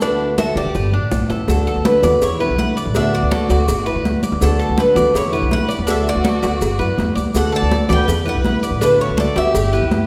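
A straight 4/4 groove at 164 BPM drives this danceable Cuban son and guajira excerpt in D major, opening with a drum fill over the first 1.5 seconds before settling into a cycle of D6, G6 and Em7 chords. A bright, metallic tres carries the melody while a second tres picks arpeggios beneath it, supported by a dark, boxy fingerpicked ladder-braced acoustic guitar and a growly, woody upright bass up front. Hard-handed congas and very quiet, tight bongos and cowbell sound close and dry, grainy maracas sit in the background beside a smooth bowed violin section playing a second line, and a wet recital hall reverb gives the ensemble a warm glow.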